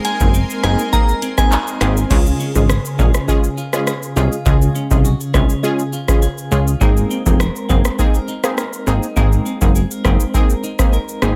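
A booming analog drum machine sets a straight dancehall groove in 4/4, its deep kick, metallic hi-hats, handclaps, rim clicks, shaker and crash cymbal sitting up front with the roomy weight of a large space. A punchy, funky analog bass with a plucky, decaying sawtooth and pulse-wave tone joins at 0.2 seconds and holds the low end alongside the drums. Bright, detuned synth brass stabs with a wave-folded bite and chorus carry the accompaniment throughout, while a clean, twangy electric guitar plays compressed arpeggios colored by tremolo and digital delay. At the start, a glassy, crystalline FM bell with chorus and delay sounds a brief melody that ends at 1.5 seconds, and a cloudy granular pad with its own reverb and sidechain pumping drifts in the background until 2.1 seconds. The harmony moves from Abadd9 to Db and back to Abadd9, giving this short, dry-sounding cut from a longer piece a summery, sunny lift.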